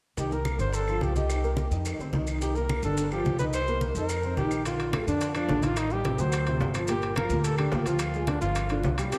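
Afro-Cuban jazz at a brisk 215 BPM in 4/4, this danceable, sophisticated clip is cut from a longer piece and sits in a dreamy mix soaked in plate reverb. A mellow trumpet with light vibrato and a smooth top carries the solo melody up front, trailed by a diffuse ambient delay, while a grand piano with audible action noise and an ensemble chorus comps underneath through minor-ninth and suspended harmony. A dark, woody pizzicato upright bass also sits up front. Low-tuned congas with a thick skin sit close and dry in the background, with tight, high-tuned bongos, grainy vintage maracas and distant, woody claves adding a soft, roomy layer. At 4.7 seconds the harmony shifts toward Bbmaj7 and Am7b5 as ringing metal-shell timbales join, and a drum fill runs from 8.4 to 9.1 seconds before the clip ends on G5.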